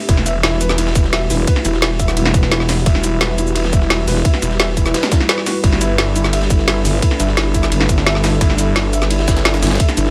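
A snarling, detuned sawtooth bass with distortion and a moving notch drives this dark, futuristic technical drum and bass excerpt, joined by a thick FM bass growling in at 1.3 seconds and again at 6.9 seconds, a tight up-front electronic kick, a layered kit of woody snare, metallic hats, ride and cabasa, a very quiet compressed breakbeat kit with a high-tuned snare, a mellow felt-muted upright piano playing arpeggios through delay, and a moody analog pad of sustained chords with chorus and 12-bit sampler grit, the piano and pad both pumping under sidechain in light digital ambience.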